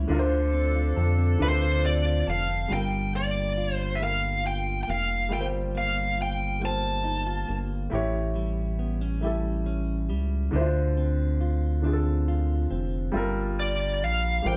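This slow R&B excerpt in 6/8 moves at 46 BPM, counted in dotted quarters, with a straight feel in G minor and a yearning, sultry mood. A rubbery square bass sits up front, dark and bouncy with a hollow, fast-attacking pluck that sustains beneath a warm concert grand piano, whose deep low end and short sustain fill out the accompaniment. A clean, compressed electric guitar plays a picked second line bathed in spring reverb, while a mellow horn section adds vintage, jazz-style stabs with light vibrato at the opening and again in the closing moments. From 1.4 seconds a smooth, bright overdriven lead guitar carries the melody high and forward, drops out at 7.6 seconds, and returns at 13.6 seconds. The harmony moves from Dm7 through Gm9, A7 and back to Dm7 before settling on Gm9 again. The band sounds as if it is playing live together in a stone room with a moderate reverb.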